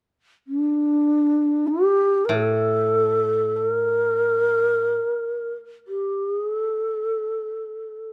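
Closely miked with light reverb, this short excerpt of austere, solitary Japanese chamber music in free time features an airy, hollow shakuhachi carrying the melody between D4 and Bb4 from 0.5 to 8.1 seconds, with breathy chiff and vibrato, while a dry, woody koto plucked with fingerpicks adds a quiet low A2 accompaniment from 2.3 to 4.9 seconds.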